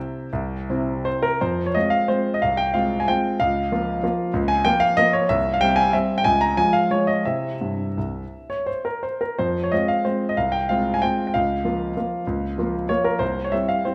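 Set in a wet recital-hall reverb, a clear, intimate grand piano with audible action noise plays this nostalgic, elegant classical waltz solo in F minor, tuned to A4 = 441 Hz, moving in a rubato 3/4 between 156 and 199 BPM across a range from C2 to Bb5, with a brief opening phrase giving way at 1.4 seconds to a longer passage through F minor, B-flat minor over D-flat and C chords before the excerpt ends at 13.9 seconds.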